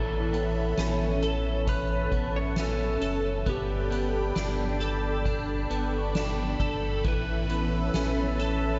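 A straight, unhurried 4/4 pulse from a soft-mallet drum kit with a boomy kick and fat snare, entering at 0.3 s, carries this blissful, floating dream pop fragment, where a deep sub bass with octave sits up front beneath a swirling, detuned phased analog pad, a bright twelve-string electric guitar picks chorused arpeggios through diffuse delay, a slightly broken-up electric slide guitar sings the melody, and a very quiet, slightly out-of-tune worn celesta adds delicate bell-like touches, all drifting between Aadd9 and Gadd9 in a dark-topped mix soaked in cathedral reverb.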